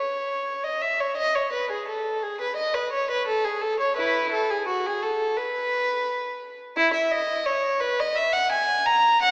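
A solo violin with a reedy, gut-string tone in period style plays up front through a wet church reverb in this serene, dance-like fragment of a baroque-style suite movement for unaccompanied violin, moving in a flexible rubato 4/4 across 9.3 seconds with a small-speaker sound.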